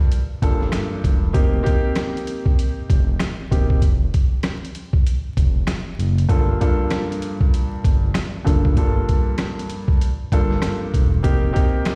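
A gritty, pitched-down sampler drum kit sits up front in this moody, dark boom-bap hip-hop excerpt, its thumpy kick, medium-tuned snare, rim click and hi-hat carrying a swung 16th-note feel at 97 BPM in G minor. Beneath it, a saturated sawtooth-and-square synth bass holds low with vibrato and sustained notes, while an intimate grand piano, its action noise audible and its tone filtered through a cassette character, accompanies over Gm9 and F7sus4. The whole cut sounds as if played on a big system in a bare room, wrapped in large studio reverb and vinyl crackle.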